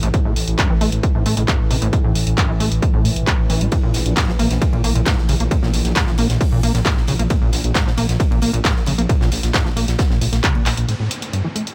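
Industrial and relentless, this driving peak-time techno cut sets an overdriven, up-front kick and a punchy analog drum machine of handclaps and hi-hat, re-recorded in a small room, under a squelchy, gritty acid bass riff with distortion, chorus, tape echo and sidechain pumping, a deep, rumbling detuned saw bass that also pumps, and an evolving, nasal analog drone with chorus in the background. From 3.7 seconds a tight, polished metal drum kit with bright, high-passed cymbals, hi-hat and a medium-tuned snare joins far back in the mix, and after a drum fill at 10.7 seconds an electronic downlifter closes this excerpt cut from a longer piece.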